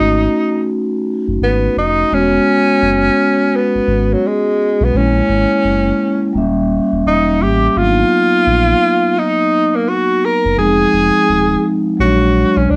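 A home cassette recording with a wet small-room reverb frames this cool, warm jazz-hop excerpt at 85 BPM, its sixteenths carrying a loose swing. Up front, a breathy, clear tenor saxophone with a tape-worn tone plays a jazz-style solo, scooping into notes and adding vibrato. A soft-mallet vibraphone with its motor off rings dark and metallic through rich changes from B9 to A#7alt, while a deep sine sub bass with an added octave holds full, sustained notes for all 12.8 seconds.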